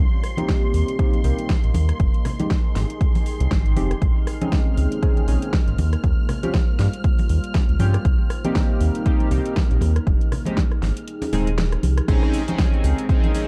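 A dark, tape-tinged deep house excerpt with a hazy digital ambience, moody and hypnotic, riding a swung 4/4 groove. A punchy, overdriven electronic kick sits up front beside a round, deep analog bass, while the overdriven drum kit adds a fat snare, metallic hats, rim clicks, shaker and crash, and ringing, close congas tick along in the background. A retro, glossy chorused polysynth plays stabs through a gritty 12-bit sampler texture and analog delay, with a filter sweep running across the first 12.1 seconds. Beneath it, a full-bodied, slow-blooming pad holds sustained minor-seventh and extended chords in a reverb haze, and a silky string machine shimmers high above with ensemble chorus. Pad, bass, stabs and strings all breathe with sidechain pumping. The kick drops out at 11.1 seconds, a drum fill follows at 11.6 seconds, and at 12.1 seconds the track falls into a drop on a Bbm11 chord as the strings fall away.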